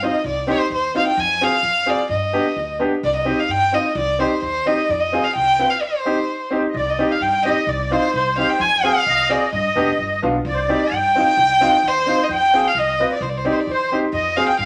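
Klezmer in C harmonic minor at 130 BPM, festive yet bittersweet, cut from a longer piece: an up-front, intimate violin carries the melody with vibrato and an airy, soft sul tasto bow over a brilliant upright piano with long sustain and a growly, thumpy pizzicato upright bass, pausing for a break at 5.8 s before a reedy, shimmering musette accordion joins the violin's range as a second line from 6.7 s, all in a wet studio reverb with a touch of vinyl crackle.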